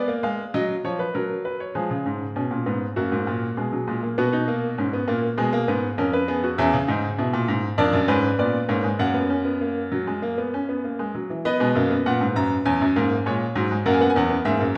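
A bright, up-front baby grand piano plays alone throughout this joyful, stately baroque-style four-part classical fugue, a short passage from a longer piece at a straight 99 BPM in 4/4, ranging from E2 to A#5 through harmony such as D#m, F#, Bmaj7 and Fdim7, its brilliant tone set in a wet recital hall reverb with a 1.6-second decay.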